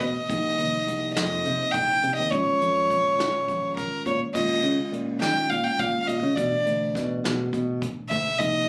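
Heard through a phone in a small, club-like room with moderate reverb and compression, this brief excerpt from a longer piece has a modest small-room ambience. It is a tense, brooding progressive instrumental in 7/8 at 207 BPM counted in eighths, set in Bb dorian with a straight feel. A rich, reedy bowed violin with a gut-string, period-style tone carries the melody up front, sitting between Bb4 and G5. Beneath it, a mellow, clean tine electric piano with subtle chorus supplies the accompaniment, while a bright, punchy fingered electric bass anchors the low end. A soft brush drum kit, acoustic and rolled-off on top with a medium-tuned snare, punchy kick, hi-hat and crash, sits mid-forward and stops at 8.5 seconds. The harmony moves from Cm7 to Bbm and then to Asus24/D as the same section plays twice over the roughly 8.7-second span.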